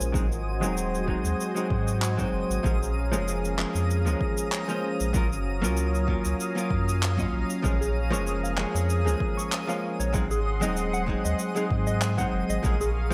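Relaxed and smooth, this sunset chillout passage moves at 96 BPM with a light 16th-note swing, its dark, clean hollow-body jazz guitar sitting up front with low-pass filtering, digital delay and slapback echo over a round sine sub bass, a punchy layered electronic kick, and natural cabasa and handclaps. A thick, detuned unison pad with chorus sustains chords from Ab7 through Bbm7 and Gbmaj7, while a twinkling granular texture with octave-up shimmer glints in the background. At 7.8 seconds a mellow fingered electric guitar adds arpeggios with delay and slapback, all set in a lush hall reverb that gives the cut from a longer piece a big arena sound.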